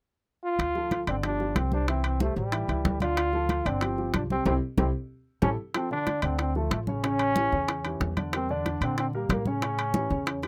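A clear, punchy trombone with light vibrato carries the melody from 0.4 seconds in this passionate, driving salsa excerpt in D minor at 186 BPM, joined almost at once by a woody, thumpy pizzicato upright bass and a percussion section of round, low-tuned bongos, damped congas struck with hard hands, and ringing metal-shell timbales. A dark, mellow upright piano fills in the harmony, moving through chords such as Dm, G7sus4, C and A7 before shifting to Dm, Em7b5 and A7 in the second section. The band hits an accent from 4.5 seconds while a drum fill runs from 4.8 to 5.7 seconds into that new section, all set in a light reverb.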